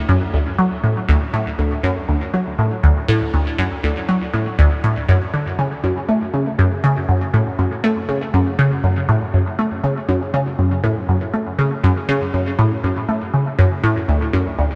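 Ambient excerpt at 120 BPM in F# minor, cut from a longer piece, with a cosmic, hypnotic mood. A single resonant blip pluck plays alone from 0.1 to 14.7 seconds in a low register, its squelchy, juicy square-and-sawtooth tone bright and up front, with fast attack and short decay, evolving through phaser, lush chorus and tape echo. The part sits in a huge ambient reverb with a long 7.9-second tail, and the same section is heard twice.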